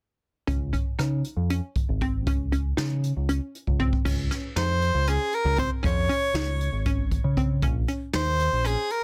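In a straight, driving 7/8, this intricate progressive instrumental opens with a round, up-front picked electric bass and a small-room jazz kit played with brushes, its boomy kick and dark cymbals close at hand, while a crystalline wavetable pluck with chorus spins quiet arpeggios behind them; after a drum fill at 3.7 seconds the harmony settles in, and a bright, close-miked soprano saxophone with vibrato and delay takes the melody at 4.6 seconds over a dense, lightly reverberant mix.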